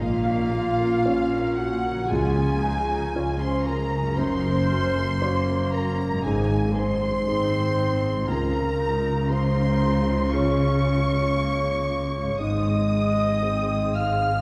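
Wet concert-hall reverb and a faint vinyl crackle surround this tender, moving passage of cinematic film score, cut from a longer piece and played with a free, rubato feel. A distant, expressive studio violin section carries the melody high above the orchestra, sharing its register with a very quiet, airy flute ensemble and a smooth symphonic violin section in the background, while a clear solo clarinet adds a lower second line. Up front, a mellow French horn section holds sustained chords, and a lush viola section fills in the accompaniment alongside a felt-muted upright piano whose audible action noise gives it an intimate, vintage character. Cellos with a gentle attack and a rich double bass section anchor the bass, and a bright concert harp rings out arpeggios at a very low level. Round, calf-headed timpani enter at 2.1 seconds and stop at 9.8 seconds as the harmony moves from Bb minor through Db, Gb and Ab, settles on Db and turns to Ab at the close.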